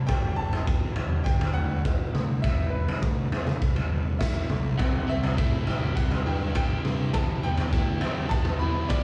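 A straight 4/4 pulse at 102 BPM drives this jangly, carefree indie rock passage, with a raw garage drum kit up front in a bright stone room (punchy kick, medium-tuned snare and toms), a fuzzy, overdriven picked bass sitting in the background, a brilliant, woody vintage upright piano carrying the melody through slapback and tape echo, and a double-tracked, compressed overdriven electric guitar riff joining at 4.8 seconds, while the chords move from Gsus2 through E5 and C to Em in a light small-room reverb.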